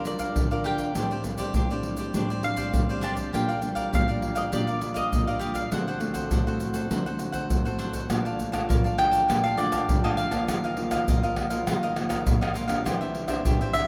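Steeped in a vast, echoing cathedral reverb, this lively, bittersweet samba and choro excerpt sets a picked mandolin melody with woody double strings against a crisp, bright cavaquinho and a small, fingerpicked nylon-string guitar. Egg shaker, pandeiro, tamborim and a deep surdo struck with hard hands sit up front in a straight 4/4 feel. At 8.1 s the harmony turns from the Gm7 and D7 opening toward a second section that begins on Bbmaj7.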